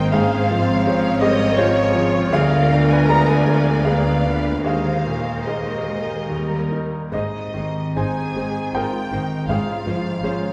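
Romantic classical music for piano and orchestra in Ab major and 3/4, this lyrical, lush passage moves with a flexible rubato at around 69-83 BPM, cut from a longer piece and heard from further back in a wet scoring-stage space. Up front, a clear baby grand piano carries the melody with long sustain and audible action noise, joined by a soft-edged studio violin section in the background, while a chamber violin section adds a focused second line above. Rich, even violas accompany, a dark French horn section holds sustained chords, expressive cellos and close, dusky double basses form the bass, and very quiet, dry timpani enter only at 9.5 seconds as the harmony returns to Dbmaj7/Ab.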